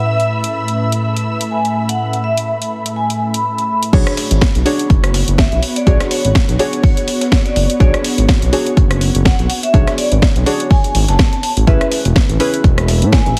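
A punchy electronic kick drum arrives up front at 3.9 s in this smooth, warm deep house excerpt, together with a smooth gliding synth bass with portamento and a deep, nasal chord stab carrying chorus and tape echo as the track drops from Amaj9 into Bm69. Before that, a detuned analog pad with a slow attack holds sustained chords and a bright, shimmering vintage string machine adds sustained texture, while an ethereal, airy pad with built-in reverb drifts through the whole passage, and the pads, stabs and bass all pump against the sidechain. A dark, ringing vibraphone played with medium mallets and a fast motor vibrato carries the melody through tape echo from the opening moments. The house drum kit brings a cracking snare, hi-hat, rim click and crash cymbal, its tape-warm layers re-recorded in a large room, with a gritty, overdriven sampler-style soul kit tucked very quietly beneath it from 3.9 s. 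Light digital ambience and a heavily compressed, radio-like sound frame the mix, and the harmony returns to Amaj9 at 11.4 s.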